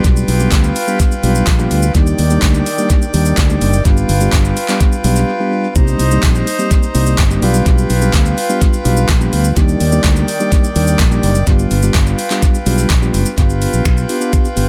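Dance-pop at 126 BPM in straight 4/4, this short cut from a longer piece feels bittersweet yet confident, moving through G7/B, Ebmaj7, G7 and Cm7. A mellow tine electric piano carries the accompaniment with a clean tone through its built-in speakers, touched by tape echo and sidechain pumping. A reedy accordion holds sustained chords with a boxy small-room character, pumping along, while a round, fingered electric bass anchors the low end. The smooth R&B drum kit sits up front, electronic and produced, with a knocking kick, warm hats, finger snaps, handclaps and shaker, re-recorded in a small room and given tape echo. A hollow group handclap lingers barely audible from 0.5 to 13.0 seconds, the groove pauses for a brief break at 5.3 seconds, and a new section arrives at 13.4 seconds within an echo-heavy mix of light reverb and digital ambience.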